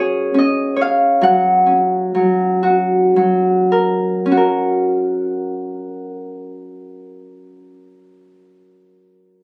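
In a gentle 3/4 with a straight feel, this short excerpt moves at a slow 49 to 73 BPM and slows down through its opening 4.3 seconds before a new section takes over. It is a tender, innocent lullaby in F# major, meant for children. A solo Celtic harp carries the whole piece, fingerpicked and ringing, with an acoustic warmth that sits up front. Its notes range from F#3 to F#5, and the harmony moves from a C#5 chord to F# at 1.2 seconds. The sound is that of a phone capturing the harp in a small room, with moderate ambience, club atmosphere and compression.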